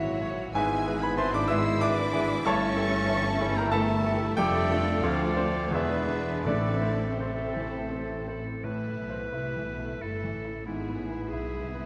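Passionate and tragic, this romantic classical passage in 3/4 with rubato sets an up-front, polished baby grand piano melody beside a lush studio violin section carrying the tune, while bright clarinet, silver flute, oboe and a background symphonic violin section weave second lines, bassoon, a very quiet viola section and distant French horns fill in the harmony, mellow tuba, rich double basses and cellos hold the bass, and hard-mallet timpani sound at 6.5 s, set within a dark, reverberant scoring-stage space.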